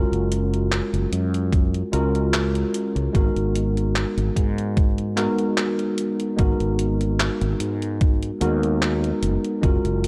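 Woozy and dreamy, this vaporwave excerpt drifts at 74 BPM with a light swing, as a clean tine electric piano colored by analog chorus and delay moves from F#maj7 to G#m7 over a growly, tube-saturated fretless electric bass, while an overdriven, detuned 8-bit drum machine supplies handclaps and hi-hat and a thumpy, up-front electronic kick enters at 1.5 seconds, the whole mix sitting in a light digital ambience.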